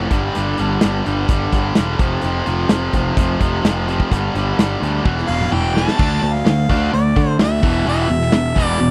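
A dry, close 1970s-style studio sound frames this swaggering, brooding classic rock passage, cut from a longer piece and moving at 128 BPM in a straight 4/4. Two distorted electric guitars, one overdriven and set in the background and the other tight and bright, play a picked riff over G5, F5 and E5 chords. A growly fuzz bass sits up front, and a big, dark-toned rock kit with a punchy kick and medium-tuned snare breaks into a fill at 5.0 seconds. A warm, smooth-topped harmonica with slapback echo enters at 5.3 seconds to carry the melody as the music moves to D minor at 6.0 seconds.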